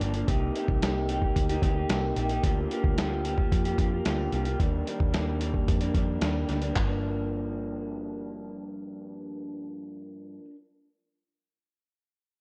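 A gritty, sampler-style soul drum kit sits up front in this wistful, lonely slice of indie bedroom pop, its thumpy kick, medium-tuned snare, hi-hat and handclaps carrying a compressed, tape-warm 12-bit crunch from a small room. The track moves at 111 BPM in a straight 4/4 in G minor, tuned to A4 = 438 Hz, and is cut from a longer piece. An electric guitar through a small old amp plays the accompaniment, its picked, slightly broken-up lo-fi tone softened by a lush chorus and vibrato. Beneath it, a vintage foam-muted electric bass adds a round, punchy low end. The chords pass through Cm7, Bb6/D and Ebmaj7 before settling on Gm7 at 6.8 seconds, where a new section begins. The drums drop out at 6.9 seconds, leaving the guitar and bass to carry on under a light reverb until the bass stops at 10.4 seconds and the guitar at 10.6 seconds.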